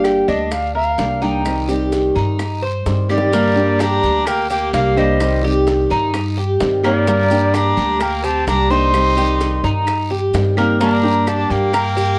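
Sultry and warm, this excerpt of Cuban son and guajira rides a Gm–Cm vamp, led by a reedy, airy silver concert flute with a straight, tongued tone and plate reverb over an up-front metallic tres picking double-string arpeggios, a dark fingerpicked flamenco guitar and a thumpy, gut-strung upright bass played pizzicato. In the background sit tight, high-tuned bongos, woody claves, a raspy guiro and grainy maracas, and during a drum fill a brilliant, punchy trumpet enters at 3.1 seconds with light vibrato on a distant second line. The whole recording carries the worn, warbling pitch drift of old cassette tape in a moderate studio room.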